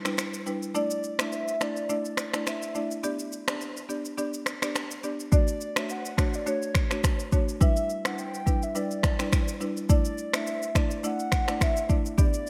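Afrobeats at 105 BPM in 4/4, with a gentle 16th-note swing, this sunny, romantic cut from a longer piece opens with a break that runs to 5.3 seconds. A buzzing marimba played with medium mallets starts at once, its hardwood bars sounding woody and dry up front as it carries the accompaniment across a cycle of Em7, Asus4, G and Dmaj7. An electronic afro-pop drum kit joins at 0.1 seconds, also up front, with a deep kick, rim clicks, finger snaps and shaker bathed in gated reverb. At 0.8 seconds a hollow, clarinet-like synth lead enters with the melody, its soft, full-bodied tone blending square and triangle waves with a noise layer, shaped by vibrato, chorus, phaser and digital delay. Light reverb and bright 1980s-style digital production give the whole a polished, glossy finish.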